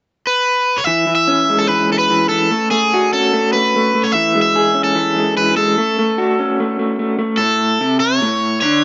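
A bright, crunchy overdriven guitar carries the melody in this short rock excerpt, entering first at 0.3 seconds with picked, up-front lines in a high register. At 0.9 seconds a second electric guitar joins, played through a small old amp, picking a riff that reaches from deep low notes up toward the lead's range. Its tone is slightly broken-up, compressed and lo-fi, with a tremolo effect, and it sits just as far forward as the lead. The harmony drifts through lush major-sixth and major-seventh colours before settling on a plain A chord at 7.4 seconds, where a new section begins. The mood is carefree yet wistful, set in light reverb with the highest frequencies rolled off, giving the whole sound a soft, vintage edge.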